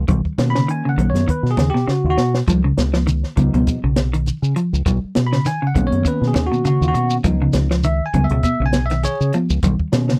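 Funky and driving, this afrobeat groove sets a round, dark fingered electric bass up front beneath a bell-like tine electric piano that solos throughout with a lush chorus. A clean, picked electric guitar plays arpeggios, while a compact cocktail drum kit with a punchy kick and high-tuned snare plays a short fill at 1.9 seconds, bright congas sit in the background, and a grainy shekere joins at 2.5 seconds. The harmony alternates between Cbmaj7 and Db9 in a dry, close 1970s-style studio sound with light reverb, cut from a longer piece.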